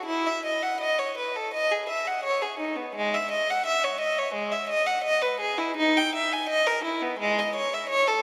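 Set in 4/4 at 84 BPM, the pulse bends freely in rubato, giving this short classical passage a flowing, dance-like lilt. It is a baroque-style suite movement for unaccompanied violin in E major, tuned to A4 = 440 Hz, heard as a fragment cut from a longer piece. A single bowed violin carries the whole 8.2 seconds alone, ranging from G#3 to G#5 with a period-style gut-string tone that is rich and reedy. The instrument sits close and up front. Around it hangs a wet cathedral reverb with a 4.6-second decay, lending the solo line a lofty, resonant halo.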